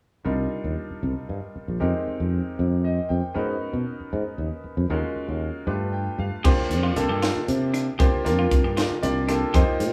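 A punchy, gritty fusion drum kit with bright cymbals and a high-tuned snare enters at 6.4 seconds to drive this intense electric jazz fusion fragment in 6/8, joining a clear, intimate grand piano (its action noise audible) that moves through minor eleventh chords and adds short fills and a growly, amped fretless bass, while a twangy clean electric guitar arrives alongside the drums playing compressed picked stabs in the background, with the band heard live in a small stone room.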